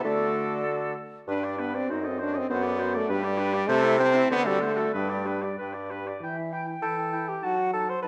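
All five winds of a quintet sound together from the opening moment in this quick, spirited and graceful classical-period movement, cut from a longer piece, in G major at 98 BPM in 2/4 with a flexible rubato feel. The French horn and bassoon sit up front: the horn's clear, vibrato-tinged accompaniment moves between E3 and D#4, while the bassoon carries the bass line from F#2 up to C5. High above, a very quiet, airy concert flute sings the melody with a straight tone and soft attack, set distant in the sound. The oboe adds a second line with a warm, roomy vibrato, and the clarinet offers gentle, soft-edged accompaniment in the background. The harmony moves from D to G through F#dim7 and D7/F#, then Am/C and D7 back to G. At 6.2 seconds a new section turns toward Em and a rootless B7/F#, all bathed in the wet reverb of a recital hall.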